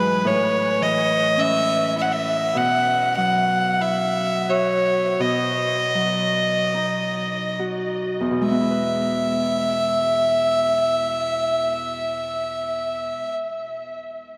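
A Celtic folk slow air in E major, pastoral and nostalgic, taken from a longer piece and drifting in free rubato at 35-54 BPM, with a slowing over its first 8.5 seconds as the chords move from A through Bsus4 and B to E: a single bowed fiddle carries the melody up front with a rich, earthy tone, light vibrato and a diffuse ambient delay, while a fingerpicked acoustic Celtic harp rings out beneath it, also up front, and the whole dreamy mix is soaked in huge, wet reverb.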